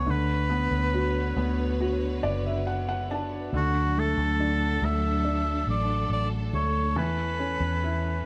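A close-miked solo oboe with light vibrato carries the melody over a soft, felt-muted upright piano with audible action noise, a lush bowed string section gliding with portamento, and a dark, round, foam-muted electric bass sitting up front, all opening this hopeful, heartfelt pop ballad excerpt at a slow 70 BPM in 4/4. Between 1.8 and 3.5 seconds the mellow piano adds a gentle fill over Bmadd9/D, leading into the move to D at 3.5 seconds, with A/E arriving at 7.0 seconds. A small room lends a moderate reverb to the whole sound.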